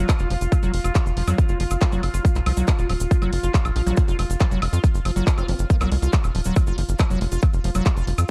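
A straight 4/4 pulse drives this short psychedelic trance excerpt, anchored by a punchy, overdriven electronic kick that sits up front. Layered electronic drums add handclaps, bright hi-hats and woodblock with a small-room character, while a grainy, saturated cabasa rustles in the background. Underneath, a tight sequencer bass gives a nasal, driving sawtooth-and-square pluck, and a squelchy, resonant acid bass riff with filter sweeps, chorus and digital delay pumps against the kick alongside an evolving wavetable pad whose morphing, warbling sustained chords carry their own reverb. A very quiet electronic zap flickers at 3.9 seconds, and at 5.4 seconds a detuned, formant-filtered wobble bass briefly surfaces as a background second line, treated with tape echo. The mood is hypnotic and alien, with a dark, dry production.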